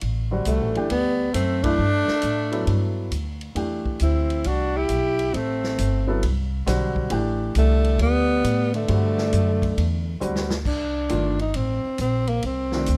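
Modal jazz in A dorian, intense and spiritual, swinging at 135 BPM, with a breathy, subtoned tenor saxophone carrying the melody up front in plate reverb while a distant, roomy alto saxophone traces a second line until 10.2 s, a polished grand piano accompanies with short sustain, a woody pizzicato upright bass anchors the low end, and a vintage drum kit with dark cymbals and a punchy kick drives the band through an accent at 1.6 s and plays a fill before the harmony shifts to Cm11 at 10.7 s, all captured close and detailed in this cut from a longer piece.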